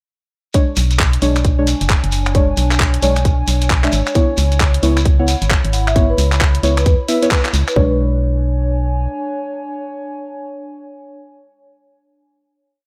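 A swung two-step garage groove bounces on a tight four-on-the-floor kick, with skipping bright hi-hats, finger snaps, handclaps and grainy hand-played shekere sixteenths. A hollow, organ-like FM bass sits up front with a syncopated line, while deep, nasal chord stabs with chorus and dub echo float over a warbling, lo-fi pad that pumps and shifts slowly. A soft-mallet vibraphone slips in at 5.2 seconds with short, ringing, dub-echoed phrases, and the drums fall away at 7.8 seconds for a final chord that lingers in light digital ambience, closing the moody piece.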